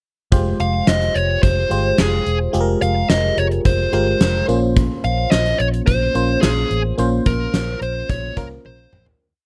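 Dramatic and nostalgic, this short 1980s-style pop piece in F minor moves at 108 BPM in a straight 4/4, built on a verse that shifts from Fmadd9 to Bbmadd9 at 4.5 seconds. A gated 80s drum kit with a fat snare, punchy kick and big backbeat drives it alongside a round, foam-muted fingered electric bass playing eighth notes with chromatic approach notes, while a glassy, bell-like FM electric piano with chorus and phaser pushes drop2 chords with grace notes. A dark, overdriven lead guitar with slapback echo states hook phrases from 0.6 seconds, and the dry mix fades out from 7.0 seconds as a drum fill closes it at 8.7.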